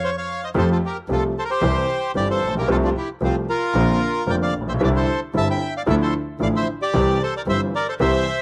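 Playful and elegant, this rubato tango fragment, cut from a longer piece and carrying the character of a cassette home recording in a lightly reverberant studio, opens on a band accent before a reedy, up-front bandoneon carries the melody over a smooth, vintage grand piano with deep bass and a biting, earthy bowed double bass, until a distant violin slips in with vibrato and portamento at 8.0 seconds.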